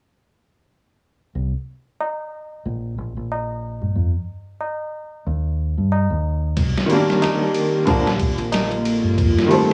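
A deep, round fingered electric bass opens this brooding, smoky trip hop fragment at 1.4 seconds, dark and up front with a touch of tube saturation, joined at 2.0 seconds by a high-tuned, ringing tabla recorded close. The groove sits at 92 BPM in 4/4 with a swung sixteenth feel in C dorian, tuned slightly flat of standard pitch, moving from an open start through Eb, Cm7, Bb and F7. Around 6.6 seconds a sampler-style drum kit arrives with a thumpy, muffled kick, medium-tuned snare and ride cymbal, pitched down, compressed and overdriven as if re-recorded in a small room. A warbling, nostalgic pad with a slow attack and long release drifts in just after under chorus and its own reverb, soaked in cassette wobble. A woody upright piano follows, intimate and the most forward part, its action noise audible beneath tremolo, tape echo and gritty 12-bit sampler coloring. The whole has the hazy, lo-fi character of a home cassette recording with a light room reverb.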